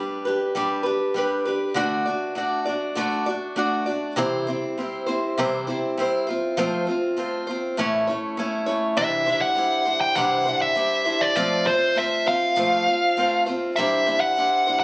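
Captured on a phone in a club-like room, the recording has a compressed, roomy sound with a moderate plate reverb that lingers for about 2.5 seconds. It is a hopeful, jangly rock piece in 4/4 at 100 BPM with a straight feel, cut from a longer performance. A picked acoustic archtop guitar plays the accompaniment from start to finish, sitting up front with a bright, boxy tone and audible finger squeak as it moves through G, D, C, F and A. At 9.0 seconds the harmony shifts to Cadd9 and F, and an overdriven electric lead guitar enters with the melody, its nasal voice shaped by a parked wah. Both guitars share the foreground, the archtop continuing beneath the lead line through the close at 14.8 seconds.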